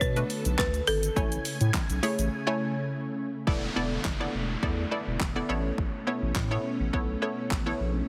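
Heavily compressed, radio-style sound with light reverb frames this short cut from a summery, carefree dance-pop track in A major at 104 BPM, in a straight 4/4. A woody, hard-mallet folk marimba carries the melody between A4 and B4 until 2.9 seconds, while a vintage, organ-like ensemble string pad holds sustained chords with ensemble chorus and sidechain pumping. Up front, a thick, saturated sine sub bass and a punchy electronic pop kit of kick, fat snare, handclaps, hi-hat and shaker drive the groove. A bright, detuned analog pluck adds chorused accompaniment that also pumps to the sidechain. After a brief break, an electronic downlifter enters at 3.5 seconds as the harmony moves from Bm7 and Amaj7 to E7sus4 and Aadd9.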